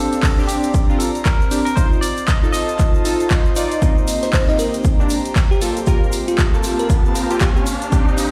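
An up-front, overdriven electronic kick anchors this deep, hypnotic deep house build-up, joined by round, detuned analog key stabs with chorus, sidechain pumping and a filter sweep, a soft, breathy pad, a barky tine electric piano melody that stops at 3.3 s, a sparkling, bell-like FM electric piano that enters at 4.2 s, a punchy analog drum machine's claps and hats, a grainy egg shaker, a very quiet gated 80s kit and a background riser from 4.7 s, all set in stone room reverb.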